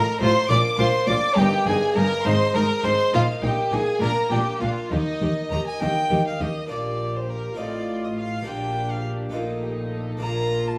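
Lively and brilliant, this brief cut from a baroque-style concerto movement in 6/8 at 68 BPM moves from Eb major to Bb major at 6.7 s, with a rich, smooth solo violin up front over two dark, woody violin sections in the background, an airy, plucked Flemish-style harpsichord, a background viola section, a focused cello section and an expressive, close double bass section, all set in a wet stone room.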